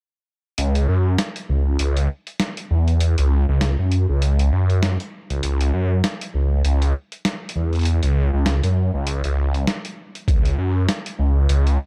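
Glitch hop at 99 BPM in C# minor with a funky, swaggering 16th-note swing, this excerpt rides on a swirling, thick phased detuned saw bass, up front and saturated with overdrive, over a gritty, pitched-down boom bap sampler-style kit of hi-hat and medium-tuned snare from 0.6 to 11.8 seconds, with a thumpy, tape-warm electronic kick landing only at 10.3 seconds, all in a dark, dry production.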